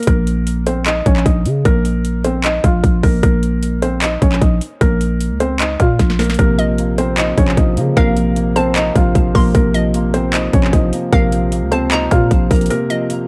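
A dark, warm digital ambience surrounds this hard-hitting, eerie trap excerpt, set in Bb minor at 152 BPM with a half-time feel and resting on a Bbsus2 chord. Up front, a felt-muted upright piano carries the melody from Bb3 to F5, its soft, intimate tone marked by audible action noise and short sustain, softened further by a low-pass filter and trailed by digital delay. The electronic trap kit hits hard with an overdriven, hard-clipped kick, sharp snare, metallic hi-hats and handclaps, and a growling, buzzy 808-style bass with a fast attack and decaying notes sits just as forward beneath it. After a drum fill from 6.0 to 6.4 seconds, a dark baby grand piano enters at 6.4 seconds with long-sustained accompaniment in the low register, and a hollow, bouncy square-wave pluck joins at 6.6 seconds, its detuned tone colored by ring modulation, a filter sweep and chorus as it plays a high second line. 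The bass drops out at 12.7 seconds for a brief break, leaving the pianos, pluck and drums to close the excerpt.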